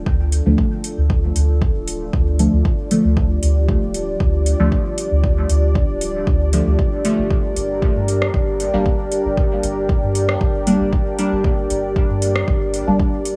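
Dub techno at 116 BPM in D minor, deep and hypnotic, with the harmony moving from Dm to Gm at 7.3 seconds in this cut from a longer piece. A punchy, layered electronic kick and a dry analog rhythm box with metallic hats and rim clicks drive the groove, while a round, soft sub bass and a moody, detuned sawtooth pad with slow attack and long release breathe with sidechain pumping. Mellow, decaying chord stabs with ring modulation and a moving notch sit in the middle register, treated with chorus, phaser and dub echo, all set in light digital ambience.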